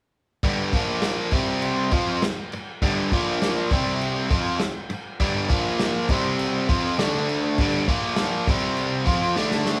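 Recorded live in one room with a moderate, large studio reverb, this raw, rowdy garage rock excerpt at 101 BPM in 4/4 pairs an up-front, biting, double-tracked electric guitar riff, bright and overdriven over power chords on G, Bb, C, F and D, with a mid-forward vintage acoustic kit of tight kick, medium-tuned snare, crash cymbal and a rolled-off top, which closes on a drum fill from 9.4 to 9.8 seconds.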